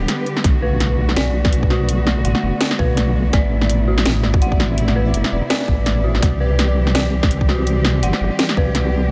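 Heavy and dark, this half-time drum and bass excerpt opens with a brief break in which a layered drum kit with a cracking snare and bright hats starts at 0.1 seconds, before an overdriven, up-front electronic kick with a tight punch enters at 0.4 seconds, while a deep wobbling sawtooth-and-sine bass with chorus sits up front beneath a rich, bowed cello section whose sustained vibrato chords pump against the sidechain, an eerie, inharmonic FM synth bell warbles through chorused arpeggios with tape echo, and a pulsing, tempo-synced triangle texture hovers in the background over a Bm7, Amadd9 and C progression.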